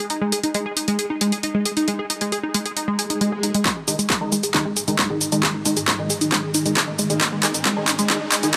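Driving, dark peak-time techno at 135 BPM in a straight 4/4, tuned slightly low to A4 = 438 Hz and cut from a longer piece. A tight, sequenced sawtooth-and-square synth riff sits up front from the start, its detuned filter pluck colored by chorus, phaser, tape echo and sidechain pumping, while an overdriven, layered techno kit of handclaps, hi-hat and shaker crackles alongside it in a small room. After a very quiet electronic swell, a heavy, overdriven kick drum arrives at 3.7 seconds as the track moves into a build-up with a drum fill and filter sweeps on both the arpeggiated synth and the stabs. Here an aggressive, thick rave stab with ring-modulated, decaying bite and a bright reverb-and-delay tail joins in, over a deep, rumbling detuned saw bass that stays barely audible. From 4.5 seconds a swarming, warbling drone with a vintage, granular shimmer hovers in the background, adding tension through its moving notch and long release as the riser climbs toward the cut.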